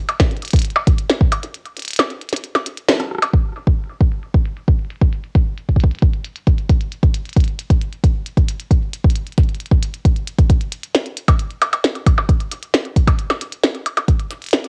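Glitchy and wistful, this IDM excerpt moves at 134 BPM in a straight 4/4 and is cut from a longer piece. An electronic kick drum sits up front with a deep, tape-warm thump, while a glitchy drum kit of clicky hi-hats, percussion blips, rim clicks and a tiny snare runs through low-pass filters and an analog delay. Early on a break arrives at 1.5 seconds, capped by a drum fill and a band accent at 2.9 seconds. From 3.3 to 10.5 seconds a filter sweep colours the drum kit, before a final section carries the kit to its close at 14.7 seconds. Light reverb and the hazy grain of a home cassette recording give the whole thing an intimate, lo-fi character.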